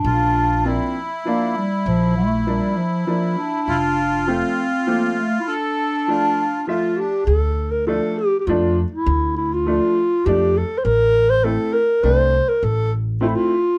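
Bittersweet and soulful, this klezmer piece in D minor moves in a straight 3/4 at 100 BPM, cut from a longer performance. A breathy clarinet carries the melody from the first moment, close-miked and whispered, with a soft attack, light vibrato and a jazz-inflected, intimate tone that sits up front. An accordion adds a reedy, sweet second line with light tremolo tuning until 7.3 seconds, when the music turns from its first section into its second. Beneath them, a clear upright piano with a worn, slightly detuned woodiness enters just after the opening and accompanies nearly to the end, while a pizzicato upright bass on steel strings gives a dark, plucked foundation, dropping out briefly before returning at 7.3 seconds. The harmony moves through Bb, F and Dm before settling on Am, all wrapped in light reverb and a dark, warm production.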